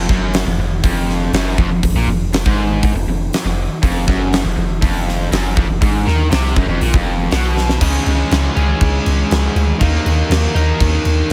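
A bright, overdriven, double-tracked electric guitar riff sits up front in this heavy, aggressive hard rock piece in F minor at 120 BPM, driven by a deep, punchy sine sub bass with a pitch-drop attack and a huge acoustic arena drum kit with a fat snare, bright cymbals and a pumping hall sound, where a drum fill at 7.6 seconds carries the Fm opening into a closing section on Db5 and Eb5 chords, all under light reverb.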